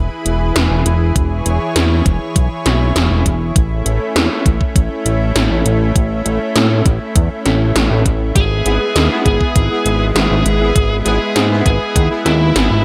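Romantic and nostalgic, this synthwave excerpt at 100 BPM in E major pairs a lush, detuned unison pad and a fat sawtooth bass, both pumping with sidechain, with gated-reverb 80s electronic drums of metallic hats and a gated snare plus a thumpy sampler-style kick entering at 1.2 seconds, before a fuzzy, compressed lead guitar with delay arrives at 8.4 seconds and brassy, wave-folded synth stabs with 12-bit sampler grit join at 8.7 seconds over chords moving from E to A to E/G#, all set in light digital ambience.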